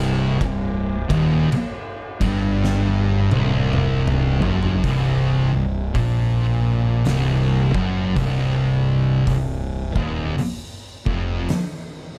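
A brooding stoner and doom metal passage, cut from a longer piece, opens at 0.0 seconds with two thick fuzz guitars and a fuzz-toned fingered electric bass grinding out a riff over a single C minor chord. The guitars sit low in their register; one is warm and up front, the other darker and set back in the background, both picked and distorted. Beneath them the bass sounds round and overdriven, its direct-and-amped tone adding a murky weight. An oversized, low-tuned acoustic drum kit comes in at 0.4 seconds, with a punchy kick, a fat snare, dusky cymbals, hi-hat, ride and toms, all saturated and gritty in a bright stone room that pumps around the hits. A drum fill from 2.6 to 4.8 seconds leads into a new section. At 54 BPM in 4/4 with a swung eighth-note feel, the ominous groove crawls forward under a dark production with light reverb and a small-room ambience.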